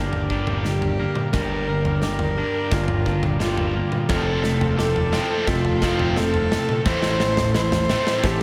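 Melancholic and brooding, this post-rock passage is a build-up cut from a longer piece. A woody, bowed cello with vibrato carries the melody up front through analog delay, over a very quiet detuned sawtooth pad with chorus, clean compressed twelve-string electric guitar arpeggios echoing through their own delay, a thick fuzz guitar riff and a growling overdriven picked bass. A big acoustic rock kit with a punchy kick plays a drum fill throughout, a bright overdriven guitar riff joins at 4.1 seconds as the chords move from Gm to Fadd9 and Am, and a plate reverb soaks the mix in a dreamy haze.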